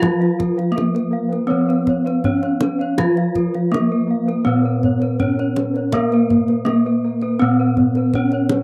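Shimmering and stately, this Javanese gamelan excerpt moves at 81 BPM in a straight 4/4, with a bright, horn-mallet bronze metallophone carrying the melody up front over a second wooden-mallet metallophone's accompaniment, both ringing with the beating shimmer of paired tuning. High bossed gongs and another metallophone spin quiet arpeggios above, while low bronze gongs hold the bass and a deep kendang drum supplies the percussion. It's a home cassette recording in a small, damp booth, and the tape coloring rests on the melody, accompaniment and arpeggio parts.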